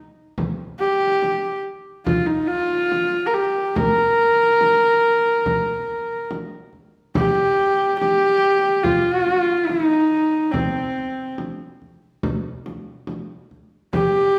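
A deep, large frame drum opens at 0.4 s, and the bowed horsehead fiddle joins at 0.8 s, carrying the melody between C4 and Bb4 in this vast, proud fragment of Mongolian traditional folk music at a straight 71 BPM in 4/4, set in a Bb zhi mode. The single fiddle sits up front with a husky, earthy tone of horsehair strings, a smooth top and gliding portamento, while the acoustic drum sits lower in the balance. Played live together in one room and bathed in a lush large-studio reverb, the music shifts into a second section at 7.1 s and runs to 14.4 s.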